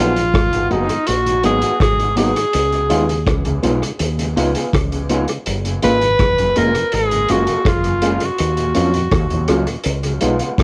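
The rhythm sits in a straight 4/4 lovers rock reggae groove, with a vintage drum kit entering at 0.2 s: a punchy kick, hi-hat and rim click ring in a small, pumping room, their top rolled off and touched by analog delay. Up front beside it, a woody fretless bass with a dark, round, hollow-body tone and analog chorus anchors the longing, smooth mood. A breathy tenor saxophone carries the melody as an up-front pop-style solo with light vibrato, scooped notes and a smooth top, bathed in analog delay and plate reverb, before stopping at 9.7 s. Beneath it, a bright, clean tine electric piano heard through built-in speakers and a very quiet, mellow tonewheel organ with key click and slow rotary speaker fill out the harmony over G#m7, C#7, F#maj9 and D#m9. A twangy, slightly broken-up electric guitar through a small old amp adds picked stabs in the background, colored by subtle chorus and delay. 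The whole passage, cut from a longer piece, has the light reverb and soft grain of a home cassette recording.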